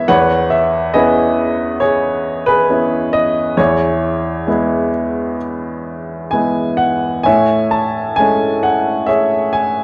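A clear, woody upright piano plays alone from the very start in this calm, tender fragment of a longer lyrical classical solo piece, its rubato phrases moving from C#m7/E to E at 3.6 seconds and Amaj7 at 7.3 seconds, with audible action noise, long sustain and an intimate, up-front presence set in a moderate recital-hall reverb and a dark production.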